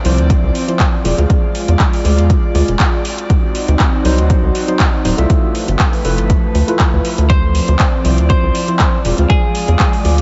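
Deep house at 120 BPM in 4/4 with a light swing on the sixteenths, this smooth, hypnotic passage in D dorian is cut from a longer piece. An airy, breathy pad holds sustained chords under a percussive, organ-like stab, both pumping against the sidechain, with tape echo trailing the stabs through a progression that moves from Dm9 through E7b9, D7b9 and G13. Up front, a rubbery, bouncy square bass enters at 0.1 s and sits low with a nasal, tube-saturated bite, joined at 0.3 s by a punchy, overdriven electronic kick. The deep house kit adds handclaps and metallic hats, also pushed through overdrive. At 7.3 s a clean, picked electric guitar arrives with a short melody, its scooped tone dressed in lush chorus and tape echo. Light reverb and digital ambience surround the mix, and its top end stays below 7.7 kHz.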